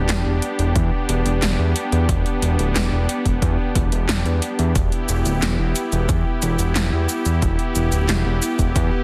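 The recording is dense and heavily limited, with a light reverb around a moody, nocturnal synthwave fragment cut from a longer piece and held on a single E minor chord. A smooth, warbling vintage pad sits up front, its detuned sawtooth and triangle tones blooming with a slow attack and long release, colored by subtle chorus and a sidechain pumping effect. Beneath it, a fat, thick analog bass with a detuned sawtooth edge, fast attack and decaying notes carries the low end, shaped by a filter sweep and placed up front in the mix. The 80s-style electronic drums bring handclaps, a shaker, metallic hi-hats and a gated snare, with a short room on the clap and hats and an overdriven grit. A punchy, overdriven analog kick enters at 0.8 seconds and anchors the groove through to the end.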